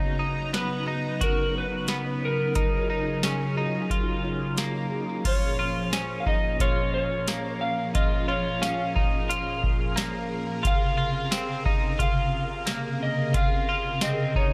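Lightly reverberant and close, this melancholic, haunting dream pop fragment moves at 89 BPM in a straight 4/4, with a vintage string machine of sawtooth violas holding slow-attack sustained chords through phaser and ensemble chorus while a bright, twangy clean electric guitar picks compressed arpeggios through analog chorus and delay. A booming analog drum machine enters at 0.5 seconds with a deep kick, crisp snare, metallic hats, crash cymbal and tambourine, and a dark, slightly broken-up electric slide guitar carries the melody through delay from 0.6 seconds. A very quiet, ringing handpan adds a dry, meditative texture of sharp finger strokes from 3.3 to 5.6 seconds, as the harmony drifts from Bmaj7 and Ebm11 into Db6/Bb and Bbm9.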